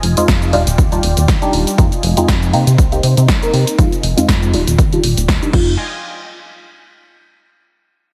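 A dry, heavily compressed radio-style sound carries this groovy, nostalgic filtered disco house fragment, cut from a longer piece, as a filter sweep runs over lush string-machine chords with bright ensemble chorus and 12-bit grit, a plucky, ring-modulated analog bass, a dark, detuned polysynth comp with phaser entering at 0.2 s, and an overdriven drum machine of crash, hi-hat, shaker and snare beneath an up-front punchy electronic kick from 0.3 s, with the strings, bass, comp and the drum machine's hats, shaker and cymbals pumping to the sidechain over a swung Fm7–Ebmaj9–Cm7 progression before the parts fall away at 5.8 s.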